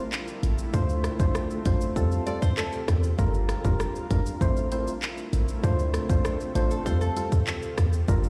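This excerpt sounds as if it is played on a big sound system in a bare room, with a stone room reverb and digital ambience around the music. It is a hypnotic, tough dancehall groove at 98 BPM in straight 4/4, cycling through Am, Dm7, Fadd9 and Gm7. Up front, the electronic island pop drum kit sets a tight kick, warm hats, handclaps, rim click and shaker, joined at 0.4 seconds by a punchy, sine-based 808-style bass with a noise layer and fast, decaying notes. A hollow, dark organ stab with chorus supplies percussive accompaniment, while a cloudy granular pad holds blurred, evolving chords with a slow attack, long release, its own reverb and sidechain pumping. At 2.3 seconds a small, acoustic nylon-string guitar enters with fingerpicked arpeggios and audible finger squeak, its notes trailed by tape echo until 7.9 seconds.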